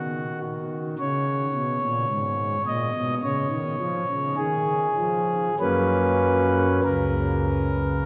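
A pipe organ on a principal stop carries this reverent, serene classical fragment entirely alone, its smooth, warm tone shaped by a baroque voicing and a touch of chiff at the start of each pipe's speech. Cut from a longer chorale-style piece, the passage spans just over 8 seconds in a slow, rubato 4/4, moving through a rootless B chord, G#madd11 and C# before settling on F# at 5.6 seconds. The voicing reaches from a deep C#2 up to D#5, giving the harmony a full, grounded body. The organ sits up front, while the recording, heard from further back in the room, is bathed in a wet cathedral reverb with a 6.2-second decay, lending the chords a lingering, spacious halo.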